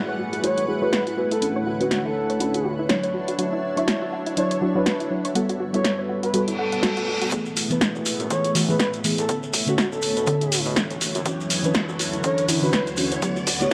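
A punchy, dry analog drum machine sits up front with hi-hat and snare over a swung deep house groove at 122 BPM in F# minor, while deep, warbling chord stabs with chorus and sidechain pumping carry the moody harmony from F#m11 through Bm9, Dmaj9 and Gmaj9. A breathy, flute-like lead with tremolo and tape echo sings the melody over a dark analog pad with gritty sampler character, a cloudy, evolving granular pad and a soft, round plucked arpeggio with analog delay, all bathed in a lush hall reverb. A reverse cymbal arrives at 6.5 seconds, and from 7.3 seconds a background electronic kick and a grainy, acoustic shekere join the build-up with a riser and a filter sweep on the stabs, as a smooth, mellow synth bass enters at 8.0 seconds in this section cut from a longer piece.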